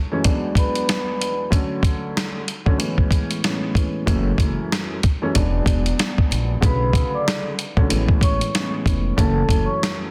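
Tough yet reflective, this boom-bap hip-hop piece swings over a gritty, compressed sampler-style drum kit with a thumpy kick and a roomy snare, while a worn, slightly detuned upright piano with audible action noise plays ninth and major-seventh chords through a cassette-tape haze, a mellow soft-mallet vibraphone with slow motor vibrato and tape echo appears briefly at 0.6 s and returns at 6.7 s, and a woody pizzicato upright bass on gut strings joins at 4.1 s.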